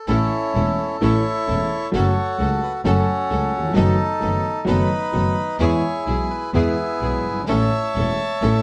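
Tango in a free, rubato 4/4 feel, this short passage cut from a longer piece sounds playful and passionate. A reedy, dark bandoneon carries the melody up front with a smooth tone and a slapback echo, starting at 0.0 seconds before the rest of the ensemble joins at 0.1 seconds. A concert grand piano supplies the accompaniment with deep bass, a boxy body and long sustain. A solo bowed double bass anchors the low end, sounding clear and intense with vibrato and an airy bow. Behind them, a lush symphonic string section plays biting, focused bowed stabs with vibrato, close in tone yet set in the background. The whole is bathed in a moderate club reverb within a dark, warm production, moving from A through F#m, B7/F# and E before settling back on A.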